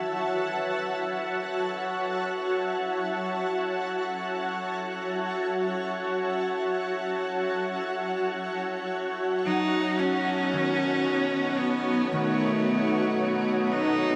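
Ambient music in free time, reflective and serene, cut from a longer piece and bathed in a wet shimmer reverb with a 7.1-second decay. A cloudy, evolving granular pad sits up front holding sustained chords with slow attacks and long release, while a concert harp, fingerpicked and ringing in the background through tape echo, fades in with arpeggios across the whole 14.2 seconds. At 9.5 seconds, as the harmony moves from F#m7 to B7, a single bowed cello enters up front with a focused, clear melody sung with vibrato.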